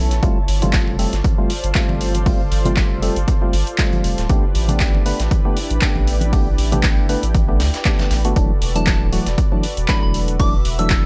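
A swung 4/4 groove at 118 BPM drives this hypnotic, late-night deep house fragment in E minor, built on an overdriven, punchy electronic kick sitting up front, overdriven handclaps and hi-hat from an analog drum machine, and a very quiet, gritty sampler-style breakbeat kit adding hi-hat and snare. Congas sit in the background in a small room, playing from 0.6 to 8.1 seconds, while a deep, round sine sub bass pumps against the kick beneath everything. Hollow, organ-like stabs with a dark noise layer carry cassette-tape colour, chorus and tape echo, and a filter sweep runs over them through the opening section. Two background pads fill out the sound: a smooth, detuned sawtooth pad supplies sustained chords, while an ethereal, airy ensemble-chorused pad with built-in reverb adds texture until it stops at 8.4 seconds. The harmony moves from G9sus4 to A9sus4 and then to E9sus4 at the drop, where a soft, pure FM bell enters at 8.8 seconds with a warbling, vintage phaser-and-chorus tone and tape echo, all set in a digital ambience.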